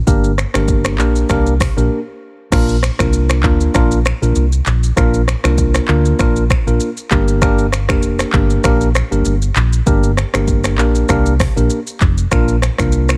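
Afrobeats in Bb major at 98 BPM with a lightly swung sixteenth-note feel, this breezy, sunny excerpt pairs a clean tine electric piano heard through its built-in speakers with a dark, round, punchy hollow-body fingered bass and an up-front electronic afro-pop kit of deep kick, metallic hi-hat, shaker, handclaps, finger snaps, rim click and crash, moving between Gm and Bb in a digital ambience, with a brief break from 1.9 to 2.5 seconds before the groove resumes.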